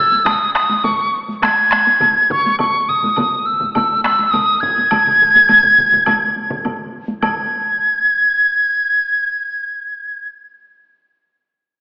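Japanese traditional taiko ensemble music with a ceremonial, driving mood, where a pure, up-front piccolo carries an expressive, tongued melody with vibrato and rolled-off highs over several taiko groups struck with hard and heavy sticks, some close and dry and others set back in the background, alongside a woody woodblock, all within a wet, reverberant space given an AM-radio tint, the percussion dropping out at about 7.8 seconds so the piccolo continues alone until 10.3 seconds in this fragment cut from a longer piece.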